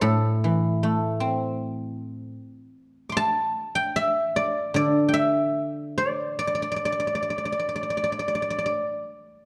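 Pastoral and flowing, this short fragment of a longer Chinese traditional piece presents a solo guzheng, played with fingerpicks, in a free, rubato feel over a loose 4/4 across its 9.5 seconds. The instrument sits up front with a mellow, silvery, ringing tone that spans from A2 up to D6. A wet recital-hall reverb and a dark, warm production surround it.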